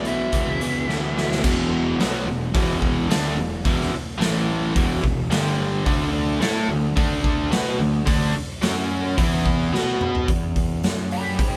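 A live-in-one-room recording with a moderate stone room reverb gives this short, gritty excerpt of blues rock and southern rock a raw, swaggering edge at 108 BPM in a straight 4/4. The cranked stack guitar sits up front, bright, double-tracked and overdriven, driving a picked riff from 0.0 to 10.3 seconds over power-chord shapes moving from E5 through A5, G5, D5 and F#5 before landing on B5. Beneath it, the fuzz-picked electric bass growls with a punchy, direct-and-amped overdrive throughout, while the raw garage drum kit pumps with a punchy kick, medium-tuned snare, hi-hat, crash and toms, its saturated sound carrying a rolled-off top. The biting lead guitar, picked and overdriven through a wah, flashes briefly at the start and returns at 11.1 seconds for a short solo as the band settles on E. Drum fills around 0.9 and 9.7 seconds mark the turns between sections.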